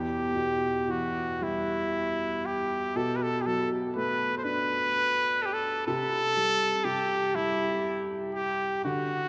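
In a rubato 6/8 pulse of about 37-42 BPM, this mournful, longing Celtic slow air sets a clear, soft-attacked classical trumpet melody up front over a mellow, felt-muted upright piano whose intimate tone carries audible action noise, moving through Em, Bm7 and C5 chords inside a cathedral reverb that lingers for 5.1 seconds, all cut from a longer piece.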